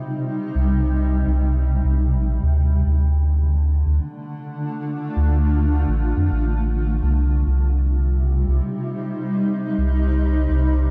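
Ambient dub at 104 BPM in C dorian, this deep, spacious excerpt sets a cloudy, detuned granular pad with slow attack and its own built-in reverb on sustained chords moving from Cm to Dm at 2.4 s and back to Cm at 7.0 s, while a round, soft sub bass of triangle and square waves enters up front at 0.5 s, all within a light reverb.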